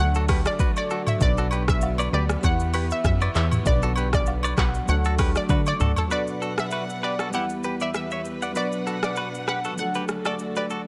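A punchy, funky analog bass sits up front in this hypnotic, mellow afrobeats excerpt at 98 BPM in B minor, alongside a gritty, deep-kicked afro-pop drum kit of handclaps, metallic hats, rim clicks, shaker and toms. A round, warbling analog pluck melody with chorus and tape echo, a twangy clean electric guitar riff with tape echo, a bell-like tine electric piano and a soft, sul tasto string section drift over a D, Bm and Em cycle, with agogo bells and woodblock in the background until 6.1 seconds. A drum fill begins at 5.5 seconds, and the bass drops out during it at 5.9 seconds.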